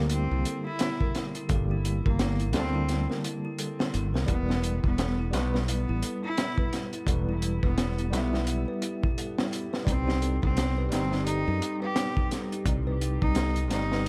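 Melancholic and hypnotic, this trip hop excerpt at 86 BPM with a swung 16th feel sets a nasal, boxy bowed cello melody coated in 12-bit sampler grit and dub echo over a worn, slightly out-of-tune tine electric piano with tremolo, a tinkling music box playing delayed arpeggios, a growly, punchy fingered electric bass, and a saturated, crunchy breakbeat kit with a high-tuned snare and tight kick. A deep, detuned sawtooth analog pad with chorus slips in at 4.3 seconds as the Gm harmony gives way to Em and then Cm, all under studio reverb and vinyl crackle.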